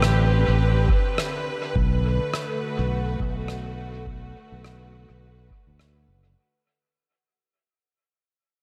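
Ambient dub at 104 BPM in 4/4 with a 16th-note swing, this hazy, meditative fragment from a longer piece sets up-front bowed strings holding soft-attack, sul tasto chords with light vibrato over a punchy, fingered electric bass carrying a filter sweep, while a rim click trails dub echo and a deep, tape-warm analog kick enters at 0.9 seconds, all moving from Am11 to Bm7 in a small room as the passage fades out across its 6.4 seconds.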